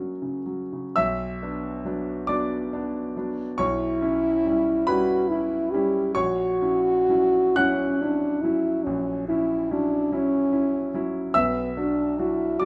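Classical and romantic in character, this short excerpt from a longer piece pairs French horn with grand piano in a solemn, melancholic mood, moving in a slow, flexible 12/8 with rubato. The horn carries the melody in a mellow, present voice touched with light vibrato, its lines sitting in a modest middle range and standing up front with a punchy edge. Beneath it, the concert grand supplies a warm, smooth, vintage-toned accompaniment that reaches from deep bass notes up to high registers. Both instruments play throughout the 12.7 seconds, and the harmony moves from an opening dominant through minor and half-diminished colours before settling back on the home minor chord at 11.3 seconds. Light reverb gives the duo a gentle sense of space while keeping both voices up front.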